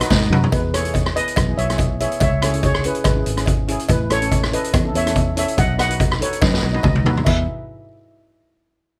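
A light reverb gives this festive, carefree calypso excerpt a gentle sense of space as it moves at a straight 142 BPM in E major. Two double seconds steel pans, played with soft rubber sticks, share the melody and accompaniment. The melody pan is metallic, shimmering and mellow, set in a boxy small room with a plate reverb, while the softer accompaniment pan fills in beneath it. A fingered electric bass adds a dark, round, punchy low end that sounds foam-muted and direct from the amp. The street-band drum kit sits up front with a boomy kick, a medium-tuned snare, rim clicks, hi-hat, toms and crash in a small room with a rolled-off top, and it opens with a quick fill before another fill at 6.4 seconds leads to a new section at 7.3 seconds. A close, dry cowbell ticks along in the background as the chords move from B to E, C#m, Aadd9 and back through B to E.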